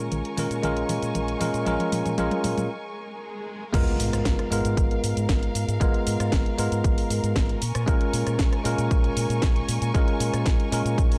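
Groovy and sleek, this nu-disco excerpt, cut from a longer piece, moves at 116 BPM in a straight 4/4 feel, centred on G# dorian. A bell-like tine electric piano carries the accompaniment up front, its bright, clean tone roughened by vintage 12-bit sampler grit and trailed by analog delay, while a distant studio string section holds soft-attack, bowed chords with vibrato and portamento, pumping against the sidechain. Underneath, a round, punchy fingered electric bass runs through an envelope filter and also pumps with the sidechain. A house drum kit with a cracking, overdriven snare, hi-hat, shaker, rim click, toms and crash opens with a fill in a short build-up, followed by a brief break where an electronic swell rises into an impact at 3.7 seconds. At that drop, a layered, punchy electronic kick enters, overdriven and re-recorded in a large room, as the harmony shifts from A#m7 to G#m69 and back to A#m7 at 7.6 seconds. 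The whole recording carries a dry, gritty hardware character with a cassette tape tint and digital ambience.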